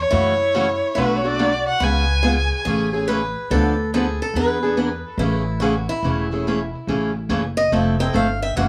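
A vibrato-laden violin sings the melody with expressive portamento over a dark, woody pizzicato upright bass at the very start of this playful, swinging jazz manouche piece in A major at 142 BPM, though the violin drops out at 3.1 seconds. Two picked acoustic guitars fill out the string swing: a boxy, parlour-toned steel-string guitar sits up front in the accompaniment with audible finger squeak, while a bright second guitar carries a higher line coloured by tape echo. From 6.9 seconds the steel-string guitar takes a solo as the harmony turns from jazzy seventh and sixth chords toward an Fmaj7, all in a moderate studio reverb.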